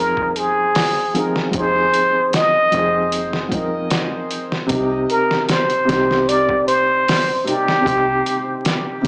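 Trip hop with a cinematic, smoky mood, cut from a longer piece: a plunger-muted trumpet carries the melody up front, breathy and soft-attacked with wah-wah, vibrato and tape echo, over a mellow felt-muted upright piano whose tremolo and audible action noise feel intimate. A dark, round fingered electric bass sits deep in the background, and from 0.2 s a gritty, pitched-down sampler-style drum kit adds a thumpy kick, medium-tuned snare and hi-hat. The echo-heavy mix has light reverb, vinyl crackle and a small-speaker sound, moving from Fm7 to Cm at 4.7 s.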